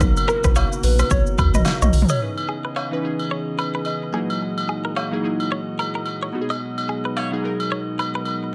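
Afrobeats at 109 BPM in B major, this short cut from a longer piece feels romantic and joyful, riding a swung sixteenth-note groove in 4/4. A punchy, overdriven deep house drum kit with a fat snare sits up front beside a round, deep analog bass; the bass drops out at 2.0 seconds, and the drums follow once a drum fill ends at 2.2 seconds. Over them, a soft struck FM synth lead with a gentle, warbling vintage tone carries the melody through the opening, treated with chorus, tremolo and digital delay. Glassy digital keys with chorus and a principal pipe organ holding smooth, baroque-voiced chords continue throughout, moving from Bmaj7 through C#m9 and F#13 back to Bmaj7. A bright, twangy clean electric guitar, recorded direct and run through phaser and delay, picks a riff, while distant agogo bells and woodblock add a large-room texture. The mix is dry overall, with little reverb.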